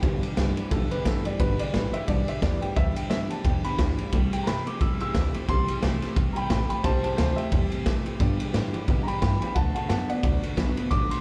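Rockabilly at 177 BPM in G major with a swung 4/4 feel, this upbeat, rollicking 11-second live cut, heard through a club PA with venue reverb, features a woody upright piano soloing with tape echo over G6 and D6 chords. Alongside it play a gritty, saturated garage drum kit up front with a boomy kick and medium-tuned snare, a thumpy, dark pizzicato upright bass on gut strings, a twangy, slightly broken-up electric guitar riff with chorus and slapback, and a bright, picked dreadnought acoustic guitar with slapback echo.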